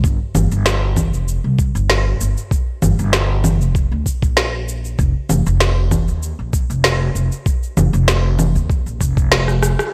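A pizzicato upright bass with woody gut strings and sidechain pumping opens this short, mystical organic downtempo cut in G minor at 97 BPM with a light 16th-note swing, joined from the start by a gritty, thumpy sampler-style kick and an up-front electronic kit of shaker, congas, rim click and snare treated with gated reverb, set in a bright 1980s-style digital production with light reverb, until the kick drops out at 9.3 seconds for a drum fill at 9.5 seconds and a band accent at 9.8 seconds.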